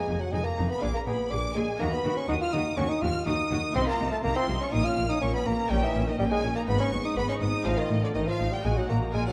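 In a straight, driving 4/4, this stormy baroque-style concerto excerpt sets a dark, up-front solo bassoon against an intense, vibrato-laden violin section on the melody, with a smoother, distant second violin line, a lush viola section and a focused cello section in the background, an expressive bowed double bass section underneath, and a bright, plucked Italian-style harpsichord, all bathed in a recital hall's reverberant glow.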